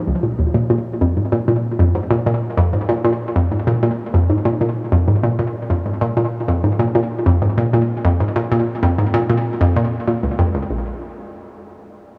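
In a straight 4/4 pulse, this hypnotic, cosmic ambient fragment features a lone hollow square-wave pluck, bouncy and detuned with a wave-folded edge, sitting up front in a low register from the start until 11.0 seconds, its chorus and tape echo trailing into a huge, long reverb over a small room's ambience.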